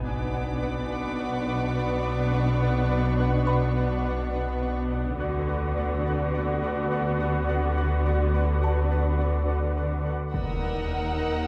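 A slow 3/4 pulse at 70 BPM underpins this tense, uneasy suspense cue cut from a longer film score, where muted con sordino viola, cello and double bass sections hold dark, veiled harmony over an ominous, rumbling drone and a mellow, chorused gated synth pad pulsing in tempo, while soft-attack high violins sit faintly above and a delicate, slightly out-of-tune music box tinkles in the background from 3.5 s, the harmony moving from Bm to D6 before landing on Ebm at 10.3 s as muted violins add a melody and a close, lush second line alongside a huge, bright impact, set in a moderate scoring-stage reverb.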